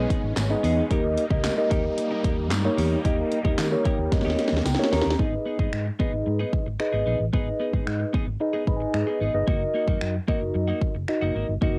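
A dry, cassette-recorded home take of bittersweet yet confident dance-pop at 112 BPM in G# minor, built on an up-front mellow tine electric piano with phaser and sidechain pumping that adds fills, a bright, twangy twelve-string electric guitar riff with subtle chorus, a dark, round, foam-muted fingered bass with transformer saturation, and a punchy, tape-warm house kit of kick, cracking snare, hi-hat, handclaps and finger snaps with a fill at 4.1 seconds, while a detuned supersaw swell sits in the background until 5.2 seconds and a distant, jingly tambourine stops at 4.8 seconds.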